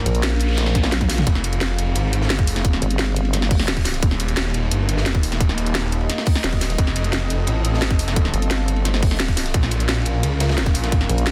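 Dark technical drum and bass at 174 BPM in F minor, mechanical and aggressive, with a snarling, growling detuned saw bass and a nasal, formant-filtered wobble bass (which drops out from 4.0 to 6.4 seconds) up front over a moody, sub-octave analog pad with chorus, phaser and sidechain pumping. A layered kit with cracking snare and bright hats and a gritty, rolled-off breakbeat kit in the background play from the start, while a faint noise sweep and a drum fill at 0.8 seconds bring in a tight overdriven electronic kick, all within a dense, heavily limited modern master.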